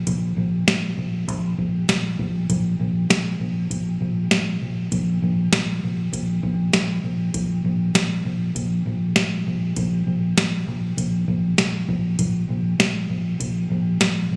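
A muted, fingered vintage electric bass sits up front, its dark, round tone sounding foam-damped and punchy through an amp as it holds the low end around Bb1 from 0.0 s to the close at 14.4 s. This short dream pop passage moves at 99 BPM in a straight 4/4, carrying a melancholic, haunting mood. Beside it, a soft vintage rhythm box enters at 0.1 s with an analog electronic kit of deep kick, crisp snare and metallic hi-hats. That drum machine is overdriven and has the boxy character of being re-recorded in a small room, yet it stays close and present. Light studio reverb and compression give the whole a hazy polish, while a phone-in-the-room capture lends it a lo-fi intimacy across a single unbroken section.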